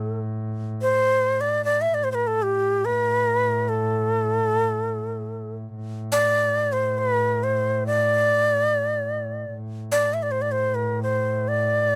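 A breathy, bright bamboo shakuhachi sings a soulful, melancholic melody up front from G4 to E5 with vibrato and tongued chiff over a bowed double bass drone on A2 with a nasal gut-string tone, in a free-time Persian modal passage in A dastgah shur, cut from a longer piece and captured in a dry, close 1970s-style studio sound.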